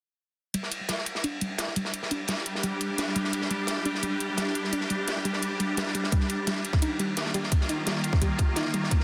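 This tense, mechanical stretch of dark technical drum and bass, cut from a longer piece, runs at 172 BPM in G minor. It opens at 0.5 seconds with a crunchy breakbeat kit, its gritty, saturated ride cymbal and medium-tuned snare sitting up front with a rolled-off top, layered with bright, overdriven electronic hi-hats. A soft, round pluck sounds at the same moment, playing mellow arpeggios over a G5 chord, coloured by chorus, delay and sidechain pumping, with a filter sweep shaping it throughout. At 1.5 seconds a swarming drone enters with slow-attack sustained chords, its detuned, granular texture evolving under built-in reverb and the same sidechain pumping. At 6.1 seconds the harmony moves to Ebadd9 and a tight, overdriven electronic kick arrives, landing firmly in front of the mix. The dense, heavily limited master and moderate digital room reverb give the whole a compact studio ambience.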